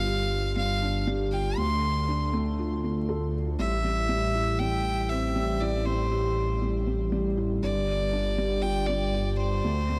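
Melancholic and hypnotic, this 119 BPM piano and strings electronica excerpt pairs a clear, nasal violin melody with light vibrato and an airy bow over a felt-muted upright piano riff, intimate and thick with audible action noise and a digital delay, and a deep, rumbling detuned saw bass, all moving through G5, Dm7 and Am7 in a dark production with light reverb.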